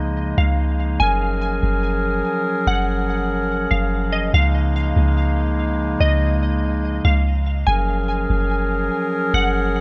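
A mellow woodwind section holds smooth, low-passed chords over a soft, round 808-style bass from the start, with a filter sweep opening the first second of this floating, blissful cloud-rap excerpt in a half-time feel. At 0.4 seconds a glassy, crystalline wavetable pluck enters high above, its detuned, warbling tone coloured by chorus and tape echo. Harmony moves between Db69 and Gbmaj9, and light studio reverb gives the up-front bass and woodwinds a gentle sense of space.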